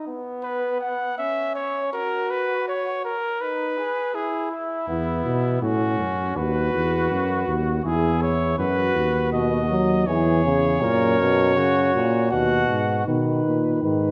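Classical imitative canzona for brass ensemble, lively and joyful at 81 BPM in 3/4, in which an up-front trumpet with light vibrato carries the melody over a distant, roomy flugelhorn with warm vibrato on the second line, a dark, smooth-topped bass trombone enters on the bass at 4.9 s, and a mellow, up-front euphonium adds accompaniment from 9.3 s, all set in a wet recital hall reverb in this passage cut from a longer piece.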